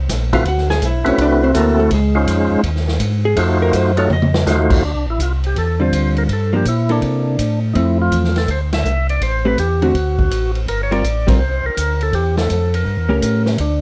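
A round, mellow tonewheel organ bass line opens this excerpt from a longer soul jazz organ trio piece, soon joined by a distant, roomy big-band drum kit with a boomy kick and rolled-off cymbals. The mood is late-night and bluesy, at a brisk 165 BPM in 4/4 with a 65% eighth-note swing. A clean, compressed hollow-body electric guitar takes an early solo with a dark, picked tone. A second, percussive tonewheel organ carries the melody up front, its key click and second-harmonic percussion turned through a slow rotary speaker and a slapback echo. After a drum fill at 4.1 seconds, the harmony settles into D minor at 4.8 seconds, moving through rich extended chords such as Dm11, C13 and A7b9, with band accents punctuating the later passage under light reverb.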